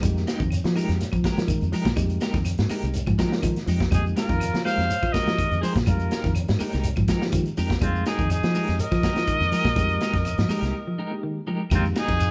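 Lightly reverberant and captured like a band playing live in one room, this hypnotic, funky afrobeat excerpt at 123 BPM in F minor rides a single Fm11 chord, with a crunchy, saturated breakbeat kit up front over a round, foam-muted fingered bass, a reedy electric piano, a dark hollow-body guitar's background arpeggios, twangy tremolo stabs from a clean electric guitar, and woody claves and a grainy shekere behind, before a breathy, intimate trumpet melody and a clear alto saxophone second line enter at 3.9 seconds, with a brief break at 10.7 seconds.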